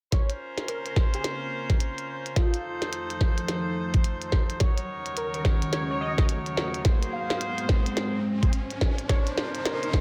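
Gritty and swaggering, this glitch hop excerpt moves at 107 BPM in 4/4 with a 16th-note swing, set in Bb minor over a loop of Bbmadd9, F7, Ebm7 and Ab7 chords, and it is cut from a longer piece. An overdriven, compressed electronic kick drum sits up front with a thumpy, gritty weight, while a glitchy drum kit adds a tiny snare and clicky hats, both re-recorded in a small room. A horn section plays stabs with light vibrato, sounding distant and roomy under sidechain pumping and digital delay, and from 1.2 seconds a deep, moody analog pad holds detuned sawtooth chords with a sub octave, slow attack, chorus and its own sidechain pumping. In the background, a tearing, edgy sync lead carries the melody between F4 and F5, bright and evolving with chorus, vibrato and digital delay. The whole passage works as a build-up with a drum fill and filter sweeps on the lead and pad, and an electronic riser enters at 2.7 seconds, all in a dry mix with little reverb.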